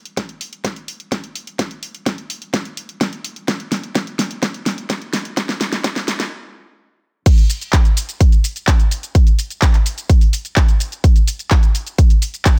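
A layered pop drum kit with a fat snare, handclaps, shaker, crash cymbal and warm hi-hats opens this emotional, euphoric EDM excerpt, joined a moment later by a punchy, overdriven electronic kick drum that sits up front, as a drum fill drives the build-up until a stop at 6.3 seconds and the drop lands at 7.3 seconds in a dry, high-pass-filtered mix.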